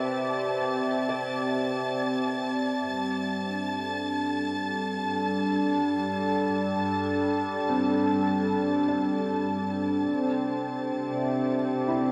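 In a slow, straight 3/4 at 50 BPM, this peaceful, serene ambient passage in C major, tuned to A4 = 435 Hz, rests on an up-front, warbling analog pad that holds sustained chords from Cmaj7 through Gsus2 to C with chorus and shimmer reverb, while a very quiet, felt-muted upright piano traces intimate arpeggios, a veiled con sordino cello section with tube saturation fades in beneath as the bass, and a lush, focused violin section fades out high above through its own shimmer reverb, inside a huge, wet ambient reverb with a 7.2 s tail.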